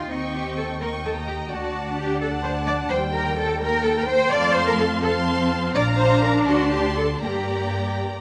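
A quick classical-period movement for string orchestra, this brief passage cut from a longer piece moves at 85 BPM in a straight 6/8, with a dramatic, restless mood. The first violins carry the melody high in their range with a soft attack and lush, expressive vibrato, while the second violins, focused and set back at a distance, trace a second line beneath them. The dark viola section supplies the accompaniment, its expressive playing touched with portamento. The cellos sit up front and close, their bass line unusually high and full-bodied, while the double basses anchor the lowest register with a focused, bowed tone. The harmony moves from Eb7 through D, Eb, F and Bb to D7 before settling on G minor at 7.2 seconds, and a moderate scoring-stage reverb gives the ensemble a sense of space.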